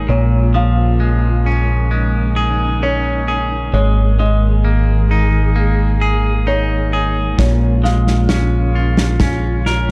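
A bright, twangy clean electric guitar picks arpeggios through spring reverb and tape echo, leading this brooding, cinematic post-rock excerpt in Bb minor at a slow 66 BPM in 4/4, moving from Bbm7 to Absus2 and back. Lush bowed strings with vibrato sustain chords, a round, up-front fingered bass anchors the low end, and a soft, felt-muted upright piano adds mellow high arpeggios with audible action noise and its own tape echo until 8.8 seconds. A loose acoustic drum kit with a tight kick and medium-tuned snare enters at 7.4 seconds, and the production carries a dark, small-room character.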